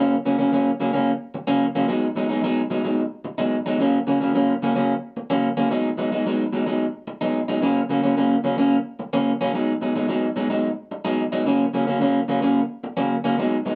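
A wet studio reverb with a short half-second tail surrounds this rock excerpt, captured live in a single room. The only part is a solo electric guitar played through a small old amp, sitting up front with a warm, slightly broken-up, compressed tone and a fingered touch. Set in an odd 7/8 metre with a straight feel, it moves between F# and B6 chords, shifting roughly every two seconds from 0.0 s through to 13.8 s. The guitar stays in a low-to-middle register, from B2 up to D#4, which gives the repeating changes a rounded, grounded body. The mood is kaleidoscopic and trippy, as the lopsided metre and the circling two-chord pattern keep the ear slightly off balance.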